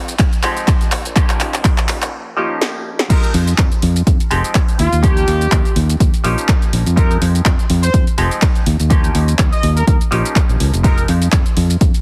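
Nostalgic and groovy, this filtered disco house excerpt moves in a swung four-four over a looping Fm7 to Eb7 progression. A punchy electronic kick sits up front alongside a bright, direct fingered electric bass with tube saturation that pumps against the sidechain, while an analog drum machine adds snare, handclaps, hi-hats, shaker and crash cymbal with a short small-room sound. An overdriven clav played through a combo amp supplies a twangy, nasal accompaniment, colored by phaser and low-pass filtering. The opening build-up carries drum fills and a brief break before the drop at 3.1 seconds, where a trumpet section enters with light vibrato and dub echo, playing a pop-style melody until 11.0 seconds. The whole mix has a heavily compressed, radio-like digital ambience.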